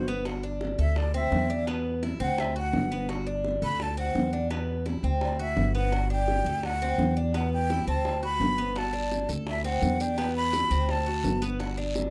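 Breathy jazz flute, Cuban tres and upright bass open this danceable excerpt of Cuban son and guajira together, with bongos joining a moment later at a brisk 169 BPM in a straight 4/4. The metal flute carries the melody as a solo, up front with a soft attack, vibrato and lifted highs, and its expressive line sits between D5 and B5 until it stops at 11.4 seconds. Beneath it, the tres picks arpeggios on its double strings, some doubled at the octave, giving a metallic shimmer. The pizzicato upright bass is woody, dark and thumpy on gut strings, sitting up front in the low register. The harmony cycles around G, D7 and E, with a passing Em7. The tight, high-tuned bongos are struck with hard hands and sound distant, as if in a large room, while a raspy guiro enters at 8.8 seconds, close and dry, within an otherwise intimate 1970s-style studio sound.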